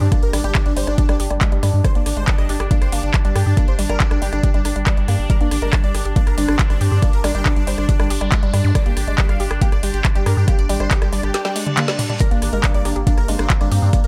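A dry, tightly produced excerpt of driving, hypnotic psychedelic trance in G minor at 139 BPM, anchored by an up-front knocking electronic kick, a garage kit of woody snare, metallic hats, handclaps, rim clicks and toms, and a round, deep analog bass line. A huge, detuned supersaw carries the melody with phaser, tape echo and sidechain pumping, over a nasal wave-folded pluck riff, a bubbling stepped-filter texture holding sustained chords and a very quiet ethereal pad. A distorted FM wobble bass surfaces in brief bursts, background effects such as a sub drop and a zap punctuate the groove, and a drum fill from 11.3 s is joined by a reverse cymbal at 11.5 s.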